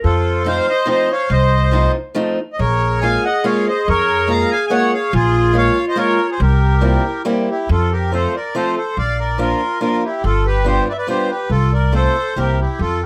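Musette waltz in a rubato three, nostalgic and whirling, taken from a longer piece. The accordion carries the melody up front with a reedy, airy voice and slow beating between its reeds. Beneath it, a dark clarinet in classical style sings a smooth-topped second line in the background until it drops away at 7.7 s, where the second section begins. An upright bass, plucked pizzicato on gut strings, gives a woody, thumpy low end close in the mix. Entering at 0.4 s, a fingerpicked archtop guitar adds bright, boxy accompaniment with fresh strings and the occasional finger squeak, while light reverb and close, detailed microphones keep the small ensemble intimate and present.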